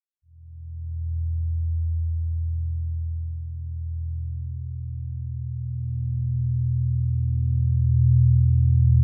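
Drenched in a huge, cavernous reverb with a 7.9-second decay, this ominous ambient fragment from a longer piece features a lone deep, rumbling drone of blended triangle and sawtooth tones, dark and up front, that rises slowly at 0.5 seconds, sustains an E5 chord between E2 and B2 with its own built-in reverb, and lingers through a long release to 9.0 seconds.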